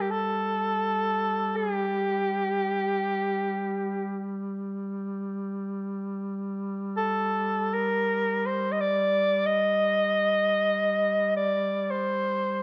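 Unmetered and in free time, this Caucasian folk lament in G minor, tuned to A4 = 441 Hz, unfolds with a solemn, longing mood across its 12.6 seconds, cut from a longer piece. A dark soprano saxophone carries the melody between G4 and Eb5, sitting up front with a light vibrato, a vintage character and a classical-style poise. Beneath it, a mellow duduk holds a drone on G3 for the full length, its folk-style voice colored by vibrato and scooped notes. Both parts sound throughout, the saxophone clearly louder than the duduk. A moderate concert hall reverb with a 1.7-second decay surrounds them and lends the lament a spacious, solemn setting.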